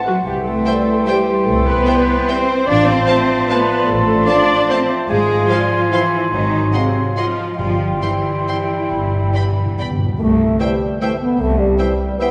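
Bathed in a hall's wet reverb with a dulled top end, this elegant, sweeping orchestral ballroom waltz excerpt in C major sways with rubato at 129-164 BPM in 3/4, as a lush violin section carries the melody in the background while a second violin section adds a line with vibrato and portamento, a woody viola section and dark bassoon fill the accompaniment, a rich, focused cello section and smooth, even double bass section anchor the bass, a distant, roomy French horn section holds sustained chords, a hollow flute ensemble, mellow oboe and clear clarinet add further second lines, and timpani played with medium mallets enters at 7.6 seconds, with a fill from 8.9 seconds leading into a new section at 10.2 seconds.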